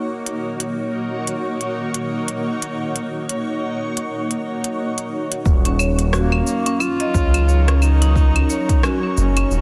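A mellow duduk with vibrato and scooped, folk-style notes enters at 6.1 s in this meditative, earthy organic downtempo excerpt in Eb minor at 89 BPM with a swung 16th feel, where a cloudy, detuned granular pad with built-in reverb and sidechain pumping holds an Ebm7 chord and a crisp, tape-warm electronic kit of cabasa, claves, hi-hat and rim click plays, and at 5.5 s a smooth, up-front sawtooth bass with tube saturation and a deep, overdriven electronic kick join, followed by vintage marimba arpeggios with delay, the whole set in a lush hall reverb.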